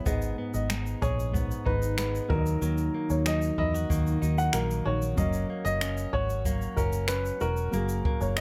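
Easy-going and sunny, this short acoustic pop excerpt moves at a relaxed 94 BPM in straight 4/4, with a mellow, woody upright piano carrying the melody over a G#m, D#m and F# progression. A full-bodied, thumb-plucked nylon-string guitar with audible finger squeak, a very quiet grand piano and bright, compressed arpeggios from a clean direct electric guitar fill out the accompaniment. A round, foam-muted vintage electric bass and a small-room brush kit with a boomy kick, finger snaps and shaker sit up front, all captured dry with close, detailed microphones.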